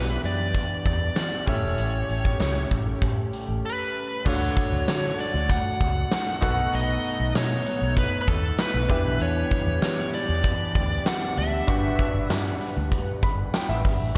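An overdriven, dark lead guitar carries the melody up front with slapback echo and delay, singing over a clear concert grand piano, a shimmering chorused pulse-width pad and a round, foam-muted vintage electric bass in this uplifting, glossy 1980s-style pop excerpt at 97 BPM in D major. A huge arena drum kit with a fat snare and punchy kick drives the straight 4/4 groove from 0.2 seconds, joined briefly by a barely audible, distant group handclap, while the chords move from Em7 and A7 through Dmaj7, B7 and Gmaj7. The guitar stops at 12.3 seconds, and the piano plays a fill from 12.9 seconds as the pad, bass and drums carry on, all set in a lush hall reverb with a big arena sound.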